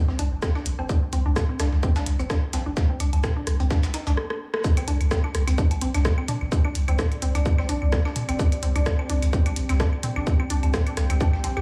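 Cool and sparse, this minimal techno excerpt rides a swung 16th-note feel in 4/4 and is cut from a longer piece. A tight, layered electronic kick sits up front beside a punchy sine sub bass with a pitch-drop attack, the bass pulsing under sidechain pumping. Above them a squelchy, resonant blip pluck carries the riff with a bright, detuned filter snap, thickened by chorus and trailed by dub echo. The percussion is a web of parts: a minimal click drum kit with overdriven, clicky hats and rim clicks; an analog-flavoured set of electronic woodblock, claves and toms with digital delay; and a gritty, compressed sampler-style soul kit of hi-hat, shaker and snare, re-recorded in a small room and thinned by high-pass filtering. A drum fill and stop arrive at 4.2 seconds, and a band accent leads into the drop at 4.6 seconds. At 6.4 seconds a deep, moody ambient pad enters, its wave-folded, ring-modulated sawtooth tone softened by a slow attack, long release and its own reverb.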